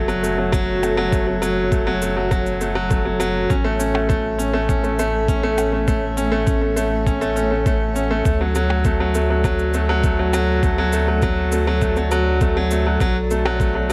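A straight 4/4 pulse at 101 BPM drives this hopeful, luminous piano and strings electronica fragment in A major, where a muffled, thumpy overdriven kick arrives at 0.5 s beneath soft electronic shaker and percussion blips. Up front, a bright baby grand piano plays a short-sustained riff with audible action noise and tape echo, while a round, nasal analog bass with tube saturation and sidechain pumping holds the low end through F#m, A, D and Bm7. Behind them, a cloudy, granular pad drifts in slow-attack sustained chords, blurred by its own reverb and gently pumping, all set in a light room and tuned slightly below standard pitch.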